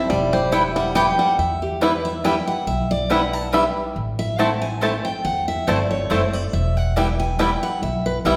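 A bright, up-front picked dreadnought guitar takes the solo from the first moment alongside twangy, fingerpicked banjo arpeggios, with woody pizzicato upright bass joining at 0.1 seconds and double-strung mandolin stabs entering at 0.5 seconds in this lonesome, haunting bluegrass piece in 3/4 and E minor at 140 BPM with a swung feel, moving from Em to Am to Emadd9 inside the wet reverb of a church or concert hall.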